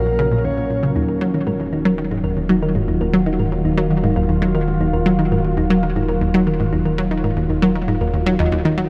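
A breathy, flute-like synth lead opens this expansive, mysterious fragment of ambient, sequencer-driven space music at 117 BPM in Eb minor, sounding briefly over a morphing, warbling wavetable pad with phaser and a deep, round sub bass, while a bright, detuned analog pluck riff enters almost at once and sits up front with chorus and analog delay, and from 1.0 seconds a dark, tine-like thumb-piano synth traces filter-swept arpeggios as the harmony moves from Bbm to Ebm, all wrapped in a huge, lingering ambient reverb.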